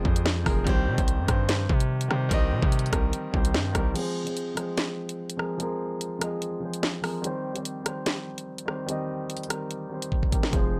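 A distorted, saturated 808-style bass hits heavy and aggressive in this tense, ominous drill excerpt at 146 BPM in half-time F minor, dropping out at 3.9 seconds for a break and returning at 10.5 seconds, while an intimate, low-pass-filtered concert grand piano with audible action noise moves between Fm and Cm and an up-front electronic drum kit of knocking kick, sharp snare, bright hi-hats, rim clicks and crash cymbal drives a fill at 10.1 seconds, all in a dry, close sound.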